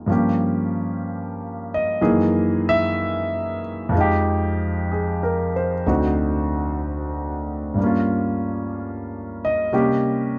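A solo concert grand piano, intimate and up front with deep bass and audible action noise, plays a melancholic, wistful swung jazz ballad through a brief fragment of a longer piece, moving over a chromatic progression of half-diminished, thirteenth, ninth and altered dominant chords under light reverb with close, detailed miking.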